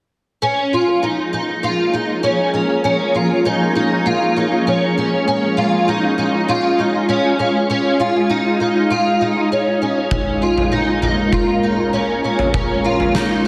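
A straight 4/4 pulse at 99 BPM carries this haunting, ethereal dream pop excerpt in Bb minor, cut from a longer piece. A fingerpicked twelve-string acoustic guitar opens at 0.4 seconds with up-front arpeggios, its dark, octave-doubled tone thickened by ensemble chorus and analog delay, with finger squeaks audible on the strings. From 1.0 seconds a shimmering ambient pad holds sustained chords beneath it, a detuned, granular sine texture with a slow attack, long release, octave-up shimmer, chorus and its own reverb. The harmony moves from Bbm7 to Db and back to Bbm7, and at 10.1 seconds an oversized low-tuned drum kit arrives with a punchy kick, fat snare and toms, gritty and saturated in a pumping, bright stone room. The whole mix sits in an echo-heavy chamber reverb with a 2.6-second decay, giving the piece a cavernous, floating haze.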